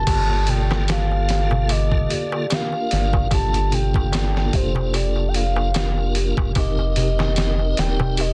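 A slow, swung trip hop groove at 74 BPM in G minor, with a gritty, pitched-down sampler drum kit thumping up front from 0.1 seconds alongside crisp, dry darbuka, while a round sub bass anchors the low end. Over a brooding, cinematic move from Gm9 to F9sus4, a lightly overdriven tonewheel organ with key click, tremolo and fast rotary speaker carries the harmony. A breathy, gliding sine lead with dub echo sings the melody as a delicate, slightly out-of-tune music box tinkles arpeggios in the background through 12-bit grit and tape echo.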